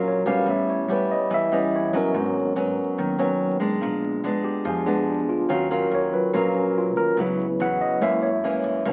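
Bossa nova with a melancholic, intimate mood, this short cut from a longer piece features a clean tine electric piano taking a solo up front across the full 8.9 seconds, heard through its built-in speakers. Beside it, a warm, fingerpicked classical nylon-string guitar sits equally forward, while a woody pizzicato upright bass on steel strings stays in the background beneath chords moving from A9 through Abm11, Bb7b9 and Ebm9. The sound evokes a very old 78 rpm record with vinyl crackle, set in a moderate club ambience.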